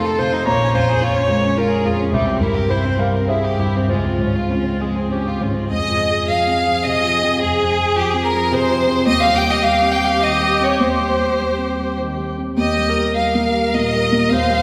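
A clear, intense chamber violin section carries the melody up front, its bowed ensemble tone shimmering with vibrato across a range from G3 to G5. This fragile, longing neoclassical piece for piano and strings moves in 3/4 at a rubato pace of roughly 97-110 BPM in F minor, and the recording is cut from a longer work. Beneath the violins, a dark grand piano sits up front, mellow, intimate and vintage in character, with its action noise audible as it spans from Bb1 to C6 in accompaniment. A single viola adds a rich, even, smooth bowed line with vibrato, held in a narrow band from F4 to Db5 and a little lower in the balance. The harmony drifts through Bbm7, C and Dbmaj7 before a new passage opens at 5.7 seconds on Fm7, moving on to Cm/Eb and settling on Eb. All three parts sound together throughout the 14.6 seconds, bathed in the lingering reverb of a church or concert hall.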